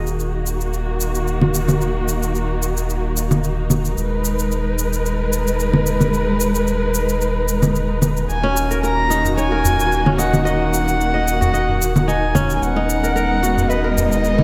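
A dark, intimate kamancheh enters at 8.3 seconds with light vibrato, portamento and an airy bow, its melody trailed by digital delay in this hypnotic, mystical organic downtempo excerpt in Eb minor at 111 BPM with a 16th-note swing. Beneath it, an expressive, distant bowed chamber string section holds sustained chords up front, a deep, round sine sub bass with tube saturation sits up front in the mix, and layered electronic shaker and congas in a small room reverb drive the groove. A bright, ringing fingerpicked kora sounds briefly at the start and returns with delayed arpeggios alongside the melody, a small, dry udu joins in the background at 9.2 seconds, and the mix carries a lush hall reverb and bright 1980s-style digital production.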